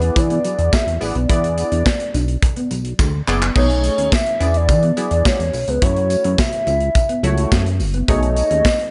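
A straight, danceable 4/4 groove drives this short cut of early-eighties boogie funk, with a punchy, up-front studio drum kit of kick, snare, hi-hat, handclaps and crash washed in gated reverb, a fill running from 3.0 to 3.6 s, and a close, jingly tambourine tucked in the background. Underneath, a dark, glossy chorused synth bass with a plucky filter sits forward in the mix, while a detuned sawtooth polysynth comp and a clean, fingered electric guitar riff with analog chorus fill out the funky harmony. On top, a hollow, woody clarinet-like synth lead carries the melody with a soft, warbling vibrato and vintage character, as the chords move from E7 through B13 and F#m7.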